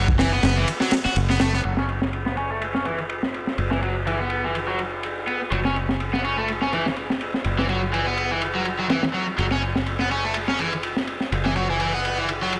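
Breakbeat in F# minor at 124 BPM with a lightly swung 16th-note feel, this funky, gritty cut from a longer piece sets a bright, overdriven, double-tracked guitar riff up front, colored by tube saturation, spring reverb and tape echo, with a filter sweep running on it from 1.6 seconds onward. Beneath it, a foam-muted fingered electric bass holds a punchy low F# while a small-room acoustic breakbeat kit pairs a high-tuned snare and thumping kick with dark, smooth cymbals and a rolled-off, saturated top. The whole mix has a dry, raw hardware character with only light reverb.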